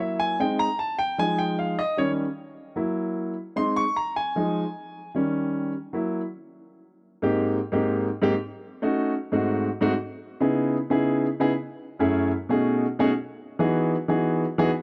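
A dry, close studio sound with the character of the 1970s and light reverb frames this sophisticated, lively jazz excerpt, in which a solo concert grand piano, up front with deep bass, an open tone and long sustain, plays across a range from Gb2 to Db6, cycling through Ab, Fm7, Eb7 and Gb7 before a second passage at 6.7 seconds moves from Abmaj7 through Ebm7b5, Ab7b9, Dbm9, Gbm7 and B13 to land on Emaj7 at 13.1 seconds.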